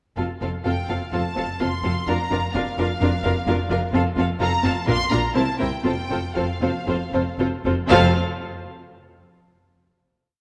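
A quick, spirited classical-period movement for symphony orchestra in F major at 116-131 BPM with a rubato feel, where a rich, focused violin section carries the melody from 0.7 s over a second violin line with soft attack and portamento, even viola chords, background cello bass notes, and lush double basses doubling the bass line, all bowed with vibrato in a moderate scoring-stage reverb before closing on a final chord at 7.9 s.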